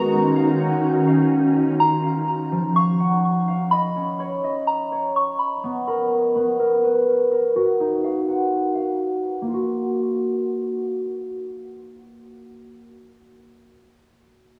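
Ringing, fingerpicked concert harp arpeggios carry this dreamy, floating half-time hip hop fragment throughout, joined at first by a glassy, ethereal FM pad holding sustained chords until 1.8 seconds and a pure, warbling synth bell melody that decays away by 5.6 seconds, with all three parts up front in a huge, wet ambient reverb while a filter sweep runs through the opening 9.5 seconds over chords such as D#m9, Bmaj9 and F#maj7.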